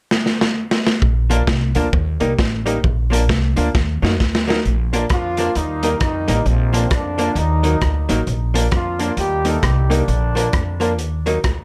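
Ska at 132 BPM in Bb major, joyful and upbeat with a swung feel, opens on a drum fill from a crunchy, saturated breakbeat kit with a punchy kick and gritty, rolled-off top, joined at 1.0 seconds by a woody, thumpy pizzicato upright bass on gut strings. A dark, clean hollow-body jazz guitar sits in the background while an upright piano adds woody stabs with long sustain, cycling through Bb, Eb and Ebm chords. At 5.1 seconds a mellow horn section with light vibrato and octave doubling takes the melody, coloured by tape echo, in a dry, close sound cut from a longer piece.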